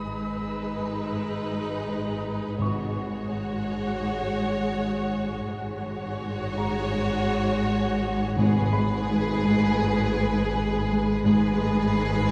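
A wet church reverb with a long tail fills this eerie, tense cinematic passage, cut from a longer piece and moving at a slow 83 BPM in G# minor. A distant, lush violin section carries the bowed melody with expressive vibrato, while a second, focused violin line sits beneath it and a smooth viola section holds a steady G#3 in the background. Two cello sections add weight, one playing an expressive riff with portamento and the other, very quiet, sustaining the bass alongside a close, even double bass section on a low G#1. A flickering, grainy granular texture with slow attacks and its own built-in reverb sustains chords in the background, and a dark, mellow concert grand piano adds a very quiet high texture. A third violin section with portamento plays high up only until 2.2 seconds, and timpani with medium mallets and calf heads sound in the background at 2.6 and 8.4 seconds, as the harmony shifts from G#m to F#sus2/G# and back to G#m.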